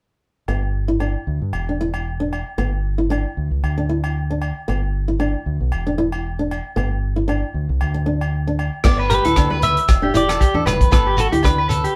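A joyful, danceable highlife groove opens at 0.5 s with a dark, fingerpicked flamenco guitar and a round, deep dub bass up front beneath ringing agogo bells, then at 8.8 s a dry, tight 70s drum kit, a grainy shekere and a twangy, slightly broken-up electric guitar playing arpeggios arrive, joined at 9.1 s by a clean, picked electric guitar melody and distant, soft-handed congas, all in a modest small-room ambience before this brief cut-off fragment ends.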